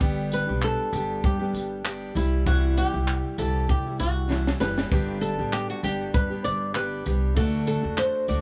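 A lightly swung sixteenth-note groove from a compact, dry cocktail drum kit, with punchy kick, high-tuned snare, handclaps and tambourine, drives this sunny, carefree acoustic pop excerpt, where an up-front fingerpicked flamenco guitar carries the melody through tape echo over a full-bodied, fresh-stringed jumbo steel-string acoustic guitar and a woody pizzicato upright bass, and after a drum fill at 4.3 s a clear, worn, slightly detuned upright piano slips in very quietly at 4.9 s, the whole heard in a small room.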